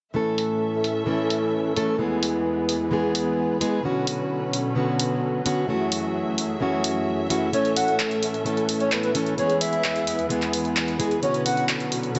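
A fingerpicked steel-string acoustic guitar, full-bodied and up front with tape echo, drives this anthemic, triumphant festival progressive house excerpt in A major at 130 BPM, cycling through A, E, Bmadd9 and F#m7. A layered, produced big-room drum kit with handclaps and filtered hi-hats and snare joins at 0.4 seconds, while a dark, woody symphonic string section holds distant bowed chords beneath. At 7.5 seconds a breathy, flute-like synth lead with soft attack, vibrato, chorus and delay carries the melody, all bathed in a lush hall reverb.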